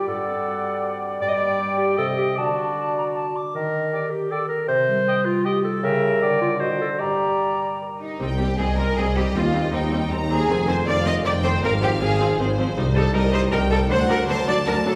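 This cinematic excerpt in 3/4 at 158 BPM opens in G minor with a ringing, thumb-plucked concert harp playing arpeggios beneath woodwind lines: an up-front clarinet, a distant, pure flute with a crisp attack, a vintage-toned cor anglais and a bassoon accompaniment, all giving a magical, quirky mood. Around 8 seconds the woodwinds give way to strings, and at 8.2 seconds the music moves to C minor. Focused, vibrato-rich violin sections carry the melody and a second line over smooth cellos, lush background violas, a bowed double bass section and a roomy tuba with a soft attack, all set in a recital-hall reverb.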